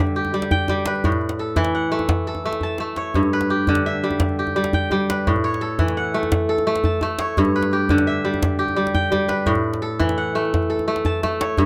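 A bright, ringing, fingerpicked kora sits up front with crisp arpeggios spanning G2 to A5 over chords alternating between G and A, while a deep, close and dry djembe supports it from 0.1 seconds with a brief fill at 2.6 seconds, giving this joyful, warm West African string piece at 114 BPM in a straight 12/8 a detailed, lightly reverberant sound as a cut from a longer performance.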